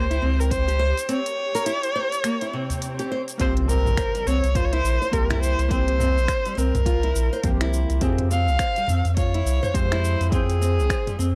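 Warm and meditative, this organic downtempo excerpt pairs a rich, expressive bowed kamancheh melody, played with vibrato and portamento through analog delay, with bright fingerpicked nylon-string guitar arpeggios, a round sine sub bass and a deep, overdriven electronic kick. A twinkling granular shimmer and a close, deep udu hit color the opening break, and an electronic swell and impact carry it into the second section, where a soft, evolving chord stab with chorus and filter sweep enters at 3.4 seconds over tape-toned snaps, smooth hi-hat, shaker and toms, all in a dry, gritty recording with transformer saturation.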